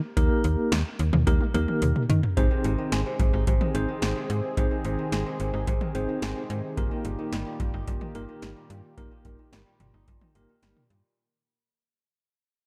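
A bright, nostalgic synth-pop piece at 109 BPM in straight 4/4 opens at 0.2 s with a clean tine electric piano through a combo amp with medium tremolo, a snappy, fast-attack slap-like FM bass, and an up-front electro analog drum machine with deep kick, punchy snare, metallic hats and toms, which plays a drum fill leading into 2.4 s. There the harmony moves from Eb to Ab as a smooth, detuned sawtooth analog pad with chorus and a crisp, fingerpicked kora playing ringing arpeggios through digital delay join in, and the excerpt fades out from that point, reaching Eb/G at 6.8 s. The production is dark and warm, with light reverb.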